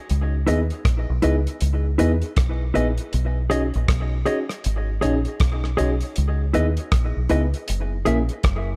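A swung 16th-note lovers rock groove at 79 BPM in B major opens this tender, smooth passage cut from a longer piece. A damped 70s drum kit, dry and up front with a tight kick, hi-hat and rim click, starts at 0.1 seconds alongside a deep, foam-muted dub bass that is round and punchy. From 0.5 seconds a soft, full-bodied FM electric piano with chorus and tape echo and a dark, clean, compressed electric guitar playing stabs move through C#m9, B69 and F#9 in a studio reverb.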